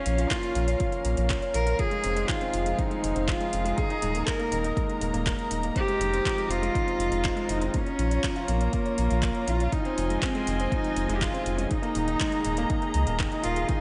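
Hypnotic and cinematic, this piano and strings electronica piece sets a woody, vibrato-laden cello melody and a soft, felt-muted upright piano riff with audible action noise, both trailed by diffuse ambient delay, over veiled con sordino chords from a string quartet and a round analog bass, both pumping with sidechain, while a deep electronic kick and a tape-warm deep house kit of handclaps and metallic hi-hats sit in studio reverb, all within a dreamy, hall-soaked mix that circles a Bbm, Fm7 and Ebsus4 progression.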